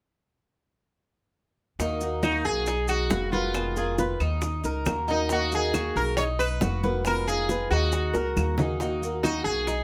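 Cuban son and guajira with a warm, danceable mood, cut from a longer piece: from 1.8 seconds a boxy, picked old ladder-braced acoustic guitar and a metallic, double-strung Cuban tres in arpeggios sit over a dark, thumpy pizzicato upright bass up front, with round low-tuned bongos, ringing congas and grainy maracas further back. A buzzing, shimmering sitar with sympathetic strings carries the melody up front from 2.2 seconds, joined by woody claves, while a small fingerpicked nylon-string guitar adds brief second-line phrases at 3.8 and 8.1 seconds. A drum fill arrives at 8.1 seconds as the minor-key chords cycle back, all in light reverb.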